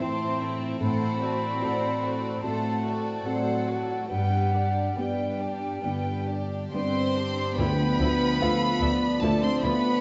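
This bittersweet, moving cinematic film score opens at once with a full chamber texture: a chamber violin section carries the melody with light vibrato and a soft, sul tasto touch, while a mellow silver flute with airy, expressive vibrato and a second, floating symphonic violin section weave supporting lines around it. A felt-muted upright piano, dark and intimate, sits in the background alongside a distant viola section and a ringing, fingerpicked concert harp spinning arpeggios. A symphonic cello section anchors the bass in a pure, bowed tone, and the rubato phrasing gives the whole passage a gently breathing, unhurried pulse in four. At 7.6 seconds the scene deepens as the harmony moves to a D minor add9 chord: a distant, roomy clarinet adds another line, a very quiet French horn section sustains chords, a rich double bass section reinforces the low end, and a very quiet timpani stroke with medium mallets lands briefly. 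The sound is wet with scoring-stage reverb and soft in its highs, lending the piece a veiled, tender glow in this excerpt cut from a longer work.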